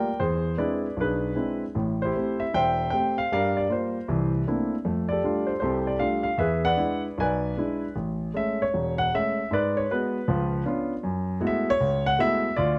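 A solo grand piano opens at 0.0 s, its warm, intimate tone captured by close, detailed microphones that catch the audible action noise of the instrument. This sophisticated, swinging jazz piece runs at 155 BPM in 4/4, with eighth notes swung at 65% and a rubato looseness to the time. The opening section moves through rich harmony, from E7b13 and Am7 through Gm7, C13 and F69 before settling on E7. At 8.0 s the music arrives in A major on an Amaj7 chord, then passes through G#m7b5 and C#7b9 to F#m11. The piano spans a range from E1 to G#5 and sits up front with a natural sound and light reverb, tuned to A4 = 439 Hz. This short cut from a longer piece ends at 12.8 s.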